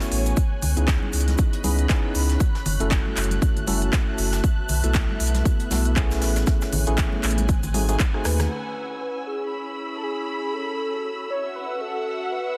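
A punchy electronic kick and a crisp house kit of handclaps, hi-hat and rim click drive this smooth, moody deep house at 118 BPM in C# minor, swung on the 16ths, with round sine sub bass up front and an airy brushed jazz kit and hard-handed congas in the background. Clean tine electric piano stabs through a combo amp carry dub echo over chords such as C#m9 and Amaj9, and sidechain pumping breathes through the piano, bass, woody strings and veiled, muted violins. After a drum fill, the rhythm section falls away at 8.5 s, leaving the strings under a velvety, detuned sawtooth synth lead with chorus and tape echo that enters at 8.3 s, before the piece is cut off.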